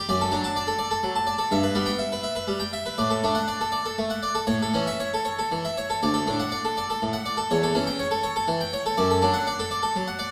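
A plucked, full-bodied Flemish-style harpsichord with two sets of strings sits close and up front, set within the 1.5-second reverb of a recital hall. This radiant, dance-like fragment of a baroque-style suite movement in D major moves in a lilting 12/8 at 81 dotted-quarter beats per minute, its uneven beats and rubato giving it a freely breathing pulse. The solo harpsichord spans D2 to A5, and its harmony moves from D/F# through Em/G, A and A7/E before settling back on D/F# at 9.0 seconds.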